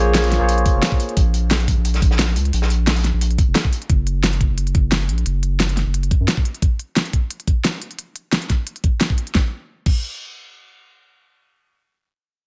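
A bright, barky tine electric piano opens this soulful, dreamy liquid drum and bass excerpt, its clean chord sweeping through a filter with a touch of delay before it drops out at 1.2 seconds. Beneath it, a deep, thick sine sub bass sits up front, saturated with a fast attack and long sustain. Two drum kits arrive almost at once. A crunchy breakbeat kit, recorded in a small room and dark, gritty and rolled-off on top, plays hi-hat and a medium-tuned snare until 3.8 seconds. Alongside it, a produced, layered pop kit brings a fat snare, crisp hats and crash cymbal, joined by a knocking electronic kick that drives the groove up front with a light swing. After the bass stops at 6.3 seconds, the kick and pop kit carry on together in a dry, close-sounding mix.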